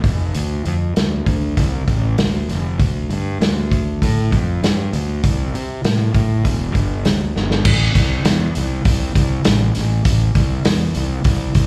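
Blues rock and southern rock in a power-trio vein, this smoky, heavy excerpt pairs a dark, round, overdriven fuzz bass played with the fingers and a muffled, lo-fi vintage drum kit with a punchy kick, medium-tuned snare and dark cymbals, both up front in what sounds like a live club gig through the PA, with a drum fill at 7.4 seconds leading into a new section at 7.7 seconds.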